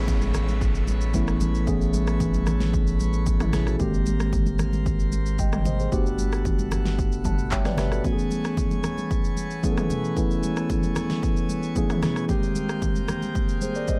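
A straight 4/4 amapiano groove from a punchy, up-front deep house kit of kick, fat snare, handclaps, rim clicks, shaker and toms, joined by very quiet, close and dry congas, carries this relaxed, warm fragment. A mellow, clean tine electric piano moves through Amaj9, G#maj9 and Gmaj9 chords with a fill at 7.0 s, while a brilliant, full plenum pipe organ holds sustained chords under sidechain pumping and a deep, round sine sub bass sits beneath until 8.0 s. A background downlifter sounds over the first 3.8 s, all within a dark digital ambience.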